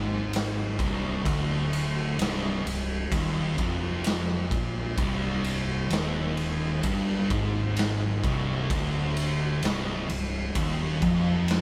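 Two thick, dark fuzz guitars open on a low, picked riff over a growly, overdriven fingered bass, with one guitar and the bass sitting in the background, and a raw garage drum kit joins at 0.3 seconds with punchy kick, medium-tuned snare and ride cymbal. This heavy, ominous stoner and doom metal fragment holds a slow straight 4/4 on a single C minor chord for its 11.6 seconds. The drums sit up front with a saturated, gritty tone, a rolled-off top and a pumping stone-room sound, while moderate reverb gives the whole band the feel of playing live in one room.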